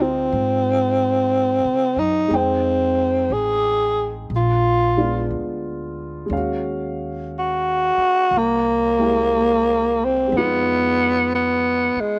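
Recorded dry in the open air, this brief excerpt of a melancholic, wistful jazz ballad swings gently in 4/4, with a growling tenor saxophone up front carrying the melody in a dark, breathy subtone, its raspy, scooped notes shaded with vibrato. Behind it, an upright piano with audible action noise and long sustain lays down boxy, intimate chords, while a pizzicato upright bass adds a thumpy, gut-string pulse underneath.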